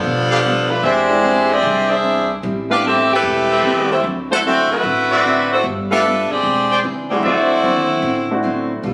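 Captured on a phone in a club-like room with echo-chamber reverb and compression, this brief cut from a longer brassy, swinging big band jazz piece moves at 150 BPM, with a tight, up-front saxophone section carrying the melody over a picked steel-string acoustic guitar and a woody, thumpy pizzicato upright bass on gut strings, while a clear trumpet section with a soft attack and smooth top adds stabs from 0.3 seconds and a polished baby grand piano joins the accompaniment at 1.1 seconds.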